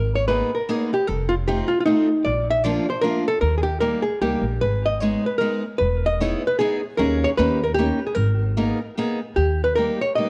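A clean, hollow-bodied archtop guitar, miked and amplified, carries the melody up front, its picked lines trailed by a tape echo. This is a short cut from a longer musette waltz in 3/4, whirling and bittersweet, with a rubato feel that lets the phrases breathe. Beneath it, a pizzicato upright bass on steel strings gives a woody, growly low end, its tone thickened by tube saturation, and it drops out at 9.9 seconds. A picked steel-string acoustic guitar of concert quality joins at 0.3 seconds to fill in the accompaniment in the middle register. The harmony moves through minor chords with added ninths, sevenths and a brief suspended chord before returning to G#madd9 and landing on D#. A light reverb surrounds the trio, and the whole sound carries the worn, warbling pitch drift of old cassette tape.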